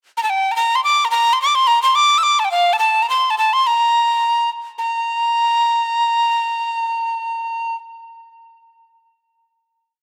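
A breathy, bright metal whistle carries this whole short Celtic reel alone, playing from 0.2 to 7.8 seconds with a tongued, chiff-edged straight tone and lifted highs that sit up front, its unsteady motif-based phrases ranging from F5 to E6. At a lively 216 BPM in a straight 4/4, the mood is wild and dark: a brief pickup leads into a single section of song-like phrases before a final note from 4.8 seconds. Light reverb and studio ambience frame the rough, home-demo sound.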